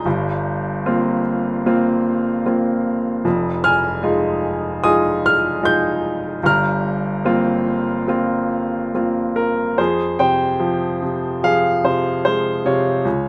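Flowing in a rubato 4/4, this melancholic, reflective classical passage for solo baby grand piano drifts through C7sus4 over G and F minor seventh harmonies before settling on F minor at 9.8 seconds. The piano sits up front with a clear, intimate and natural tone, long sustain and audible action noise, its range reaching from deep bass to high treble. Close, detailed microphones and light reverb frame this short excerpt from a longer piece.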